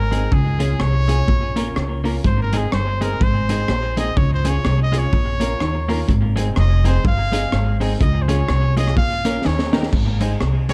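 A swung ska groove at 125 BPM in Ab major drives this joyful, upbeat cut from a longer piece, with a gritty, saturated breakbeat kit (punchy kick, high-tuned snare, dark cymbals) and a woody pizzicato upright bass sitting up front. A bright, present trumpet plays a solo with vibrato from the start to 9.9 seconds, over a clean, scooped electric guitar with tape echo, short woody piano stabs, and a very quiet, slightly broken-up picked guitar riff. A drum fill at 9.4 seconds leads the chords through Eb back to Ab, all in a dark production with little reverb.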